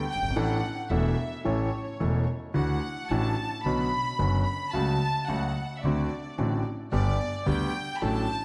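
Tango, passionate and melancholic, unfolds with a rubato feel in this brief cut from a longer piece. A chamber violin section carries a bowed, biting line high in its register with light vibrato, sounding earthy yet distant, and it is marked as a solo across the whole 8.4 seconds. Beneath it, a concert grand piano sits up front with an intimate, polished tone, deep bass and audible action noise, supplying the accompaniment from the very start. An upright bass plays pizzicato on steel strings, its woody, growly low notes anchoring the harmony. The chords move from Asus4 to A, then through Dadd9, Bmadd9, F#m/C# and D7 before arriving on G. A generous scoring-stage reverb wraps the ensemble in a wet, spacious hall.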